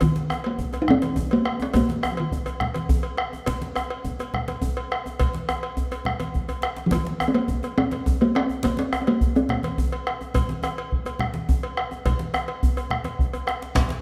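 In a 12/8 pulse at 140 dotted-quarter beats per minute, this earthy, festive West African drum ensemble excerpt rides on a dark, up-front bombo, bright, low-tuned congas with a close, dry thin-skin sound, a metallic cowbell and a warm djembe with rattling metal jingles. A talking drum with a short ring carries the melody in two phrases, one from the start and one from 6.9 seconds, and drum fills arrive at 6.3 and 13.2 seconds. At 13.8 seconds a tight, cracking djembe and a grainy, mellow, very quiet shekere enter briefly, all set in a moderate recital-hall reverb.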